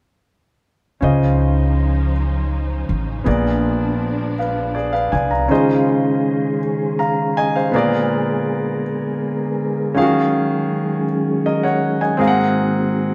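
Hopeful and jubilant, this slow 6/8 gospel excerpt in Db major at 54 BPM sets an intimate, clear grand piano with audible action noise over veiled, muted strings and a woody, thumpy pizzicato upright bass until 5.5 s, when a mellow, flute-like tonewheel organ with second-harmonic percussion, chorus vibrato and a slow rotary speaker takes over the sustained chords, all ringing in a reverberant stone room as the band plays live together.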